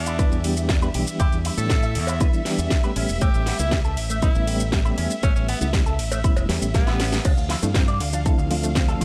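An edgy, forceful tenor saxophone with scooped notes and tape echo opens this groovy, sensual nu-disco excerpt at 119 BPM, over lush bowed violin chords with sidechain pumping and a bright, tube-saturated fingered electric bass. A punchy, up-front electronic kick and a house kit with cracking snare and metallic hats drive a straight 4/4 feel, while a reedy, mellow electric piano with tremolo, a twangy envelope-filtered guitar riff with chorus and slapback echo, and a background cowbell fill out the Em7 to A7 groove. After a drum fill at 6.7 seconds, the saxophone stops at 7.2 seconds as the harmony moves to Dm7 and a nasal, detuned unison pluck enters with arpeggios, all in a dry mix.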